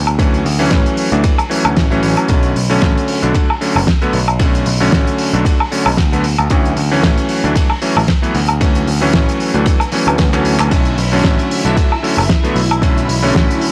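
Cosmic and groovy, this nu-disco excerpt moves at 114 BPM in 4/4 with a light 16th-note swing, sitting in B minor as the chords drift between Dmaj7 and Bm7. A punchy, layered electronic kick anchors the groove alongside a damped 70s drum kit with a fat snare and dark cymbals, adding handclaps, hi-hat, ride, snare and woodblock, with a drum fill arriving at 10.3 seconds. A picked electric bass, amped and direct, holds the low end with sidechain pumping, while a clear electric grand piano with clangy lows and long sustain sits up front, pumping too and trailed by tape echo. A very quiet electronic swell leads into the entrance of a lush string machine at 10.7 seconds, whose soft-attack sawtooth chords with a sub octave are colored by phaser and ensemble chorus. The whole piece carries a dry, gritty cassette character in a small room.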